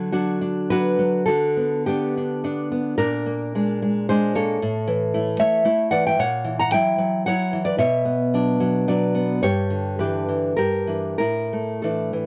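A lone nylon-string guitar opens the recording, bright and fingerpicked, sitting up front in a close, dry studio sound with a 1970s character. This is a romantic piece for solo classical guitar, tender and sunny in mood, moving in three with a flexible, rubato feel. The guitar ranges from G2 up to A#5, and its harmony travels from D through G/D to a Bb7 at 3.0 seconds before settling on A. A colourful F#7/A# leads into Bm and Em7/G, and the passage arrives at an Asus4 at 11.2 seconds. Cut from a longer piece, the fragment runs just 12.3 seconds, with the guitar playing alone throughout.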